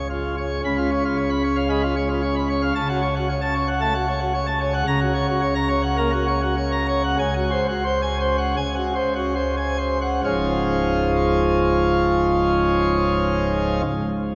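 A full pipe organ plenum, brilliant with mixtures, baroque voicing and chiff, sits up front in a wet church reverb and plays a jubilant classical toccata in Db major at 65 to 114 BPM in straight 4/4, moving from Db7 through Gbm and Gb over a Db bass to Ab7, slowing down from 3.8 to 10.2 seconds before settling on Db in this short passage cut from a longer piece.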